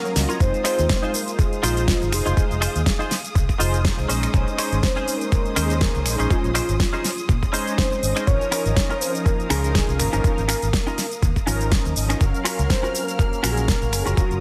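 A dry, close-sounding cut of groovy, sensual nu-disco in Bb minor at 122 BPM with a lightly swung sixteenth feel opens with a brief break and drum fill, and then the overdriven, thumpy electronic kick lands up front at 0.4 seconds. A punchy, envelope-filtered fingered bass and a pop kit of finger snaps, crisp hats, shaker and fat snare carry the groove, while a bright, twangy clean guitar riff with analog chorus and 12-bit sampler grit sits over pumping mellow synth brass and a smooth, expressive string section in the background. On top, a soft, round octave-layered synth lead with chorus, tremolo and delay carries the melody as the chords move from Fm7 through Bbm11 and Db69/Ab to Gbmaj7.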